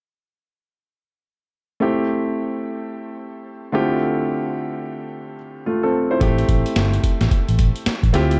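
Swung sixteenths give this confident, bouncy new jack swing R&B fragment its lilt: a smooth, vintage grand piano bathed in shimmer reverb plays alone over Am7 and Dm11 from 1.8 s, until a round, punchy, foam-muted electric bass and a gritty, compressed, pitched-down boom bap sampler kit, with a thumpy kick and high-tuned snare, join at 6.2 s, inside a dark production with moderate plate reverb.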